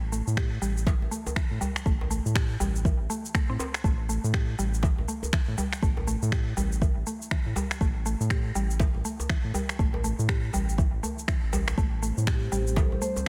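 Hypnotic and driving, this afro house excerpt from a longer piece runs at 121 BPM in 4/4 with a 16th-note swing, sitting in A minor. An up-front, deep electronic kick anchors the groove, joined by layered, tape-warm electronic cabasa and finger snaps with soft clipping on the snare, plus a tight, cracking, saturated djembe. A round, detuned analog bass with a fast attack carries sidechain pumping from the outset, while a woody FM synth pluck spins arpeggios through chorus and tape echo. The harmony moves from an open start to A5 and then Am7 near the close, where a moody square-and-sawtooth analog pad slips into the background at 12.1 seconds, followed at 12.3 seconds by a marimba melody played with medium hard mallets on rosewood bars in a boxy small room. The dense, heavily limited master is set in digital ambience.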